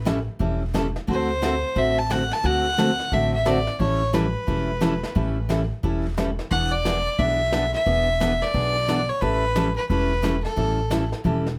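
A clear, biting fiddle leads up front with light vibrato and an airy bow, carrying a playful, cheerful western swing melody at 177 BPM in A mixolydian with a swung eighth-note feel. Beside it, a bright, full-bodied picked acoustic guitar plays the accompaniment over A7, D7, A9 and E7 with audible finger squeak. A woody, thumpy pizzicato upright bass sits underneath, a brushed jazz kit with a boomy kick stays in the background, and light reverb frames this short excerpt from a longer country piece.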